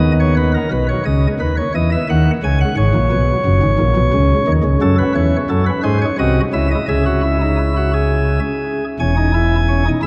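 In a straight 6/8 at 58 dotted-quarter beats per minute, this elegant and joyful baroque-style three-part fugue, cut from a longer piece, features a solo chamber organ whose light, bright, sparkling flute stops with their chiff sit up front across a span from E1 to G#5, moving from B major into C# minor at 4.8 s before a new section begins at 9.0 s, all bathed in a long cathedral reverb within a dark, warm production.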